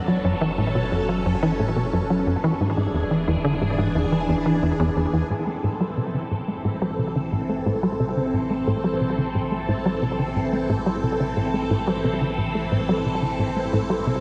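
A straight 4/4 pulse drives this mysterious, expansive slice of sequencer-based ambient space music, carried by a tight, punchy sequencer bass riff with a plucky sawtooth-and-square bite, ring modulation, analog chorus and delay, and a filter sweep from 5.3 s. Up front beside it, a bright, swirling vintage string machine holds soft-attack chords through ensemble chorus and phaser, while a deep, round sine sub bass sits in the background and fades in from 5.3 s. At the start, a very quiet, airy wind-like noise texture breathes until 5.3 s, when the harmony settles from F#m and E7 onto Am, all set in a vast, echoing reverb.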